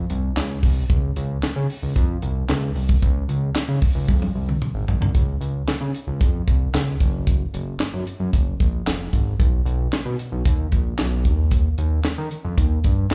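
Smooth and feel-good, this early-eighties boogie funk excerpt pairs a fat, detuned sawtooth analog bass with a filter sweep and sustained, fast-attack notes against a tight, dry acoustic funk kit of kick, high-tuned snare, hi-hat, toms and handclaps, both up front in a live club setting heard through the venue's PA, with a drum fill at 4.1 seconds leading into the second section at 5.1 seconds.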